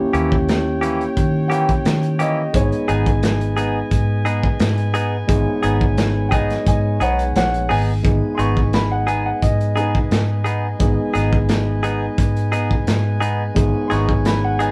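Captured as a band playing live in one room, this cut from a longer straight-eighth soul blues has a moderate studio ambience and a smoky, soulful mood, moving at 87 BPM in 4/4 in G# minor. The crunchy breakbeat drum kit sits up front with a saturated, gritty sound, a tight kick, a medium-tuned snare, hi-hat and a rolled-off top. Beneath it, a vintage muted fingered electric bass gives a dark, round, foam-muted low end, while a direct-recorded clean electric guitar adds bright, twangy, compressed stabs. A barky, overdriven tine electric piano played through a combo amp supplies accompaniment, and a mellow horn section holds smooth, tight sustained chords with light vibrato. From 1.5 s a woody, polished upright piano takes the solo line over the harmony, which moves from D#7b9 to G#m at 2.5 s.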